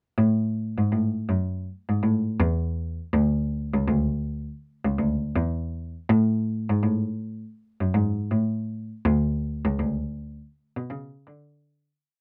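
A lone bowed cello opens the piece at 0.2 seconds, carrying a deep, melodic reggae bass line with rests in the low register. The mood is uplifting and sunny, set at 81 BPM in 4/4 with a swung sixteenth-note feel in A major. The single player's tone is rich and reedy, with a gut-string, period-style character, placed up front in the mix. The recording has the dry, close sound of a 1970s-style studio, touched with light reverb. This short, complete piece is a single verse, and it fades out from 9.0 to 12.0 seconds.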